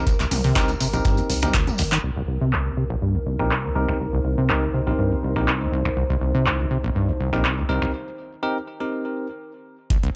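Acid house at 122 BPM in C minor with a light 16th-note swing, driving and gritty, cut from a longer piece and opening on a drop over a Cm7 chord. A squelchy, resonant sawtooth acid bass riff with overdrive and tape echo sits up front with an overdriven electro drum machine of metallic hats, snaps, claps, toms and crash. A deep, overdriven electronic kick drops out at 1.6 seconds, while a faint dusty sampler-style kit and a jingly tambourine play through the first 2.0 seconds, up to a drum fill. Beneath, a saturated sub bass and a moody, detuned square-and-saw pad pump in the background, bell-like electric piano stabs gain a filter sweep from 2.0 seconds, a shadowy ambient pad appears at 3.2 seconds, and a break arrives at 7.9 seconds, all set in spring reverb.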